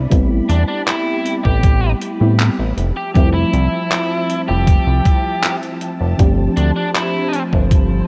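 Heard through a cassette-tape haze with light reverb and a digital ambience, this short vaporwave fragment, cut from a longer piece, drifts at 79 BPM in a straight 4/4 with a faded, woozy mood. A thumpy electronic kick leads the mix alongside a glossy, nasal synth bass that sits up front, its pulse and sawtooth tones carrying tube saturation, a filter pluck and a moving notch. Handclaps and hi-hat from a detuned 8-bit drum machine share the kick's overdrive and gritty 12-bit sampler character, both sounding as if re-recorded in a small room. A round, warbling FM electric piano with a dark, chorused tone and a noise layer plays the accompaniment, while a silky string machine holds evolving chords in the background. From 0.5 seconds a bright, biting lead guitar carries the melody, its picked, overdriven notes trailed by tape echo, over a progression of Am9, Fmaj7 and G9sus4.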